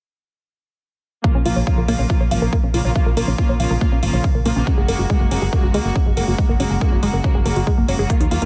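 A driving, bittersweet stretch of uplifting trance in Bb minor, moving at 140 BPM in a straight 4/4 and cut from a longer piece. From 1.2 seconds a muted studio string section holds veiled, con sordino chords with vibrato and a smooth top, filtered low and pumping under sidechain, while an analog pluck spins nasal sawtooth arpeggios colored by chorus, phaser and digital delay. A punchy electronic kick sits up front, joined shortly by a round, dark FM bass with a fast attack that also pumps, and metallic electronic hi-hats at 1.5 seconds, both drum parts carrying a small room ambience. The harmony shifts from Bbm to Gbadd9 at 4.7 seconds, lending the bittersweet lift. The mix is dry and heavily compressed, with a dense, radio-ready sound.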